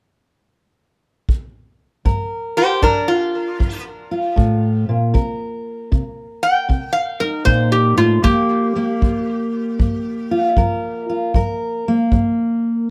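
A slow 78 BPM swing in 4/4, with a lilting shuffle on the eighth notes, is set by a punchy, up-front kick drum played with brushes, entering at 1.3 seconds. This acoustic country blues excerpt in G minor sits slightly below standard pitch, tuned to A4 = 435 Hz, and carries a smoky, mournful mood. A fingerpicked steel-string acoustic guitar joins at 2.1 seconds, its fresh strings giving a warm accompaniment over Gm7, Cm7 and back to Gm7. At 2.6 seconds a metal-body resonator slide guitar takes the melody as a solo, played with a steel bar and fingerpicks, its bright, metallic, nasal voice sitting up front with a tape echo trailing behind it. Light reverb gives the small ensemble a sense of space.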